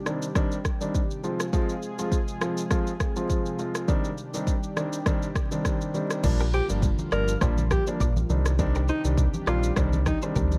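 Vinyl crackle and digital ambience frame this hypnotic, mellow afrobeats excerpt in C minor at 102 BPM, where a lush, detuned sawtooth pad with chorus holds sustained chords and an intimate vintage grand piano with audible action noise plays accompaniment over an electronic afro-pop kit with a deep kick, rim click, shaker and crash, until at 6.2 seconds a full sine sub bass and very quiet, close-miked congas enter, soon joined by a bright, scooped direct-recorded clean guitar riff with analog chorus and slapback echo in the background and, from 6.5 seconds, a breathy alto saxophone melody with light vibrato and slapback echo.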